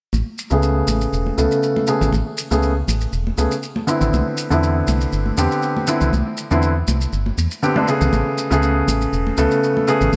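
This relaxed deep house excerpt at 120 BPM in A major, with a light swing on the 16ths, opens at 0.1 s with a hollow, dark, organ-like FM bass, vintage hard-hand congas sitting in the background and grainy, mellow maracas. At 0.5 s a soft, felt-muted upright piano enters up front with intimate stabs through a low-pass filter and delay, a filter sweep running across its part as the chords move from Amaj9 to Cmaj9 at 4.1 s and back to Amaj9. A moderate plate reverb and bright 1980s-style digital production frame the groove.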